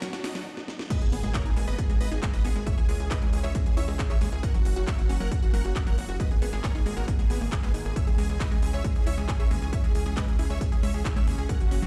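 A straight 4/4 pulse drives this bittersweet, euphoric uplifting trance passage, cut from a longer piece: a drum fill and a background riser build into a brief stop before the drop arrives at 0.9 s with an impact, bringing in an up-front, heavy electronic kick to join the techno kit's cracking snare, smooth hats, handclaps and crash cymbal. A tight, punchy sequencer bass with sidechain pumping drives the low end beneath a huge, airy supersaw lead that carries the melody through tape echo, while a detuned unison pluck plays arpeggios and a thick, chorused pad holds sustained chords in the background. The mix sits in a large studio reverb, and the kit and kick carry a tape-warm, small-room character.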